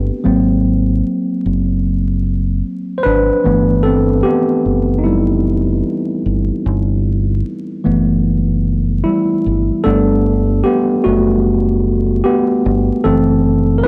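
A worn, slightly out-of-tune tine electric piano, lightly overdriven with a cassette-tape tint as if heard through built-in speakers, sits up front and carries the lead over chords moving from Ab9 and G6 to Gmaj7 and F#m7b5, while a dark, round, punchy fingered dub bass with tube saturation anchors this cosy, dreamy lo-fi hip hop passage in G major at 75 BPM with a swung 16th-note feel, its dry, gritty sound dusted with vinyl crackle and light reverb.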